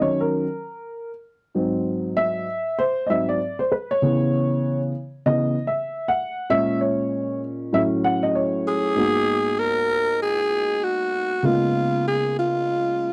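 A dark upright piano opens this smoky, nocturnal hip hop excerpt alone, its woody, slightly detuned tone sitting up front, with audible action noise adding intimacy and a vintage character. In a swung 4/4 feel it plays accompaniment through chords such as D#m7, G#aug7, C#m7 and A#m7b5 before reaching A6. At 8.7 seconds a growling alto saxophone takes the melody, close-miked and raspy, its breathy subtone shaded by light vibrato, scooped notes and a slapback echo. The harmony then moves to G#m9 and C#13, with both instruments carrying on until the piece is cut off at 13.1 seconds. Light reverb surrounds a dry, close recording with a 1970s-style studio feel.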